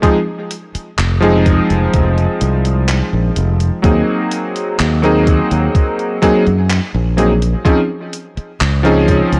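A slow, straight 4/4 pulse at 63 BPM comes from a thumpy electronic kick and a gated 80s drum machine's handclaps and hi-hat, giving this woozy, dreamy vaporwave fragment its sampler-style, tape-softened beat. Up front, a clear, vintage electric grand piano with clangy low notes and chorused unisons carries the chords through Fm7, Ab9/Eb and Dbmaj9, trailed by tape echo. A bright, punchy fingered electric bass with tube saturation joins at 0.7 seconds, all inside a gritty hardware-and-cassette sound with digital ambience.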